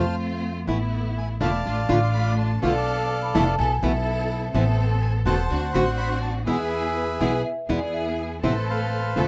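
A rough home-demo mix with light reverb carries this sultry, passionate tango excerpt in A harmonic minor at a rubato 124 BPM, where a reedy, dark bandoneon sings the melody up front over a bright, fingerpicked nylon-string guitar, a woody pizzicato upright bass and soft-attack bowed stabs from a rich studio string section, while a mellow vibraphone played with soft mallets adds a ringing, vintage second line from 3.1 to 8.3 seconds.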